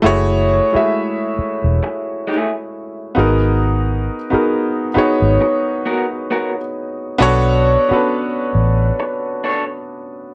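Soulful and introspective, this short neo-soul and R&B excerpt moves at a relaxed 67 BPM in 4/4, with a swung sixteenth-note feel in F# dorian. A clear concert grand piano carries the accompaniment throughout, its intimate, natural tone marked by audible action noise, deep bass and a short sustain. Beneath it, a vintage muted fingered electric bass sits in the low register with a dark, foam-muted, round and punchy sound, playing until 8.9 seconds. An electric guitar through a small old amp enters at 1.8 seconds as a second line, slightly broken-up, lo-fi and compressed, with tremolo colouring its picked notes. The harmony drifts from F#m9 to G#m9 and then to Bm9, and a moderate studio reverb gives the up-front parts a modest sense of space.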